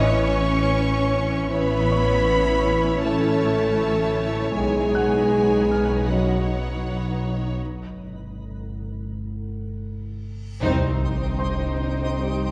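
Moving in a straight 4/4 at 79 BPM, this uneasy, eerie suspense cue from a cinematic score layers lush, vibrato-rich violins, dark sul tasto violas, mellow French horn chords, a very quiet trombone section that drops out at 6.4 s, distant cellos and double basses, a metallic inharmonic drone with chorus, a twinkling granular shimmer and a faint vintage grand piano over A and Badd9 before a break at 7.6 s. Then a huge, bright reverse cymbal and sub drop with a timpani hit lands on C minor at 10.6 s, all in a moderate scoring-stage reverb with a dark, warm production.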